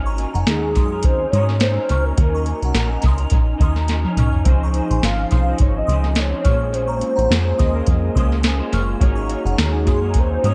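A plucky, punchy analog bass sits up front beside a soft vintage rhythm box with a deep kick, crisp snare and metallic hats, while a warbling, detuned lead carries the melody over a slightly broken-up electric guitar through a small old amp, glassy bell tones in the background, and mellow lo-fi synth keys that enter at 4.4 seconds during a drum fill, all in a laid-back, nostalgic indie bedroom-pop excerpt with a light swing, an echo-heavy mix and tape echo on every part except the bass.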